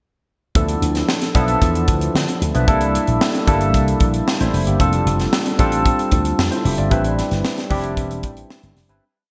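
A crisp sixteenth-note studio groove at 113 BPM from a punchy, high-tuned fusion drum kit with gated reverb drives this bittersweet, slick 1980s jazz-funk pop piece in D dorian, as a growly, agile slap bass through an envelope filter plays a syncopated line with slides and a barky, lightly overdriven tine electric piano with chorus pushes rootless chords from Dm69 through C13 to Am11, adding short fills, before the bright digital mix with its lush hall reverb fades out between 6.9 and 9.0 seconds.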